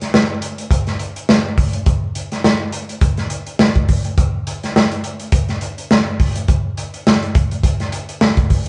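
A crunchy, saturated acoustic breakbeat kit of hi-hat, tight kick and medium-tuned snare sits up front and mid-forward with a gritty, rolled-off top, driving an energetic, strutting funk excerpt at 104 BPM in 4/4 with a 56% sixteenth-note swing, all heard through a moderate studio reverb with a live-room feel.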